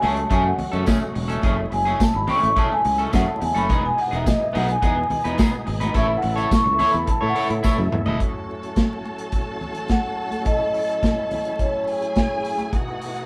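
A mellow, ringing soft-mallet vibraphone leads this sultry, glamorous disco excerpt, backed by a twangy, slightly broken-up electric guitar, a growly fingered bass, a reedy tonewheel organ with key click and fast rotary speaker, an up-front acoustic drum kit with a tight kick, close, dry high-tuned congas and a faint jingly tambourine, until a drum fill at 7.6 seconds gives way to a lush, bowed string section at 8.2 seconds as the guitar and bass stop, the band sounding live in one room under a touch of vinyl crackle.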